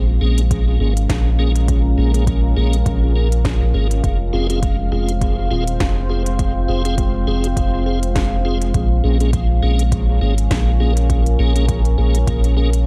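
A round, soft dub sub bass sits up front, holding down a Bbm7 to Fm to Bbm7 progression in this deep, spacious ambient dub excerpt at 102 BPM with a light 16th-note swing. Behind it, a moody, detuned sawtooth pad with slow attack, chorus and its own reverb sustains chords carrying a 12-bit sampler grit, while a piping, scooped tonewheel organ with key click, slow rotary speaker and dub echo adds stabs. An overdriven, layered electronic kick sits in the background alongside a kit of woody snare and crisp hi-hats that is overdriven and sent through dub echo, and the overall mix is dry and close.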